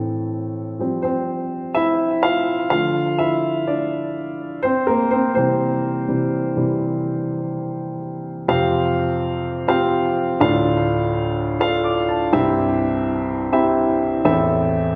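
A woody upright piano sits up front with a touch of tape echo, carrying this dramatic, bittersweet pop passage alone at 125 BPM in D minor, cut from a longer piece. Its chords move through Am, Fsus2, Dm and C, and a second passage begins at 8.5 s and cycles back to Am near 14.2 s. A wet recital hall reverb surrounds the playing with a lingering sense of space.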